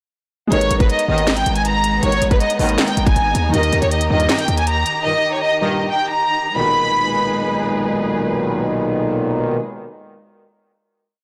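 This eerie, hard-hitting trap piece in G# harmonic minor runs at 159 BPM with a half-time feel, built on a bouncy beat of hard-clipped kick, sharp snare layered with clap and crisp sixteenth-note hats, alongside punchy, heavy 808-style bass holding long sub-bass notes until about 4.8 seconds. Up front, a biting violin section plays a looping melody with light vibrato, filtered and touched with delay, over a very quiet felt-muted upright piano holding spread chords, a veiled con sordino string pad and classical-style brass stabs echoed by delay. After the hook, the strings sustain a final G#madd9 chord from 6.6 seconds as the brass stabs continue, all within a blown-out, overdriven mix and moderate studio room reverb.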